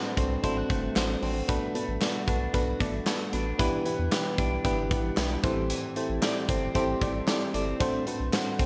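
Nostalgic and dramatic, this short cut from a longer 1980s-style pop piece moves at 114 BPM in a straight 4/4, set in E minor. An FM electric piano carries the accompaniment up front, its mellow, warbling tone decaying after each fast attack, while a clean, picked electric guitar plays a compressed riff bathed in lush chorus and delay. From 0.2 seconds a round, sine-like sub bass adds deep, sustained weight beneath a big rock drum kit of kick, medium-tuned snare, hi-hat and tambourine that sits mid-forward with a rolled-off top and a tight kick. A hollow group handclap enters at 1.0 seconds, barely audible in the mix. The chords move from D7/A through Bm7, Em7/B and Am7 before returning to D7/A. A moderate, lush hall reverb and small room ambience frame the bright digital production.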